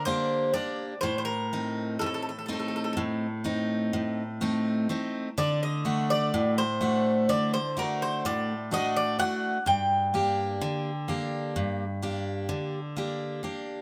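Greek folk in 9/8, reflective and dark, this short excerpt from a longer piece speeds up throughout as it moves from G minor through A diminished and D back to G minor. Up front, the bouzouki carries the melody with a metallic, double-strung ring, some strings doubled at the octave, until it stops at 12.9 seconds. The bright, full-bodied jumbo steel-string guitar, picked on fresh strings, accompanies beneath it to the end at 13.8 seconds, all within a light reverb.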